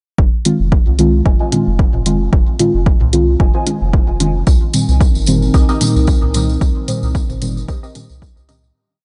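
A round, soft dub sub bass and a punchy, up-front four-on-the-floor kick open this cavernous, meditative dub techno piece at 112 BPM in F minor at 0.2 s; they are soon joined by tape-warm closed hi-hats, deep, mellow off-beat chord stabs warbling with chorus, phaser and dub echo, sparse muted stabs with detuned filter plucks, and very quiet, overdriven toms and congas, while a dark, moody analog pad with a slow attack and a jingly hand-played tambourine arrive at 4.5 s as the harmony shifts from Fm7 to Cm7, with the bass, stabs and pad all pumping, before the groove fades out from 5.9 s.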